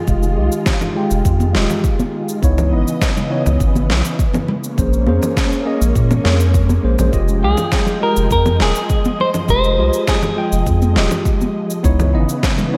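A round, dark analog bass sits up front in this relaxed sunset chillout excerpt in F minor at 102 BPM, beneath silky string-machine chords with ensemble chorus and a clean tine electric piano carrying a filter sweep, digital delay and slapback echo, while a deep, layered electronic kick, a tape-warm electronic shaker, snare and congas, and soft-handed vintage congas entering at 1.4 s in the background hold a straight groove, and a fingered semi-hollow electric guitar adds a short delayed melody from 7.4 to 11.2 s, the mix set in a big arena-like concert hall reverb over Fm9, Dbm9 and Bbm9 chords.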